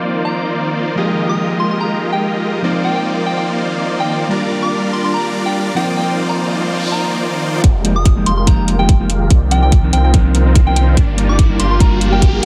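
Future bass with a bittersweet, dreamy mood, this excerpt moves at a half-time feel with a light swing on the sixteenths, cycling through lush minor eleventh and minor seventh chords. From the start, huge, detuned supersaw chords carry a bright, low-pass filtered riff that pumps against the sidechain. Beneath them, a clean, dark electric guitar played with the fingers adds accompaniment, while a very quiet, ethereal pad holds airy, slow-blooming chords. A soft FM bell enters at 0.2 seconds with a pure, warbling melody high in its range, coloured by chorus and tape echo. A noise sweep enters in the background at 6.2 seconds, and at 7.6 seconds the build-up begins: a riser and a filter sweep on the supersaws arrive along with a thick, saturated sub bass, metallic layered hi-hats and a hard-clipped, tape-warm kick that sits up front in a digital ambience.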